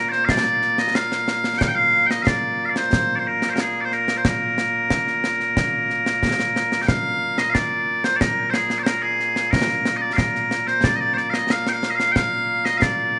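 Scottish pipe music with a proud, stirring character, this piece moves at a steady 91 BPM in straight 4/4 and sits in B-flat mixolydian. The bagpipes carry the melody from start to finish, piercing and continuous up front, ranging from Bb2 up to G5. A concert snare drum and concert bass drum, close, dry and acoustic with dark cymbals, join at 0.1 s, while a moderate recital-hall reverb frames the performance as the same strain is played twice, the repeat beginning at 6.9 s, in this short cut from a longer tune.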